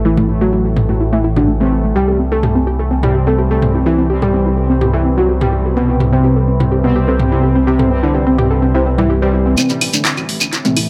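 A hypnotic, driving melodic techno excerpt at 126 BPM opens on a rumbling detuned saw bass up front, brassy analog synth stabs steeped in tape echo, a warbly dusty pluck arpeggio, a resonant overtone-sweeping drone, a fat analog lead with vibrato, a glassy wavetable pluck second line and a tape-warm house kit of claves, handclaps, hi-hat and toms over Am7 and Cmaj7, with a very quiet moody pad beneath, filter sweeps on the lead and plucks, and a grainy shekere joining a build-up at 9.6 seconds in an echo-heavy mix.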